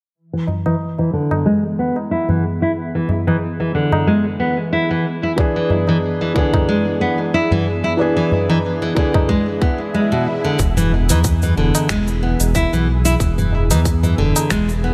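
Warm, earthy organic downtempo at 92 BPM with a light 16th-note swing, cut from a longer piece, opens on an E7 chord as fingerpicked nylon-string guitar arpeggios sit up front with delay and a filter sweep, joined by high-tuned, close and dry tabla and an ethereal, airy, warbling pad in the background that carries its own filter sweep and sidechain pumping; a soft, felt-muted upright piano and a tight electronic kick arrive at 5.4 seconds, and an electronic swell leads into a new section at 10.6 seconds, where the piano stops and a smooth, up-front sawtooth synth bass enters alongside an organic electronic kit of cabasa, finger snaps and smooth hi-hats, the whole mix sitting in a lush hall reverb.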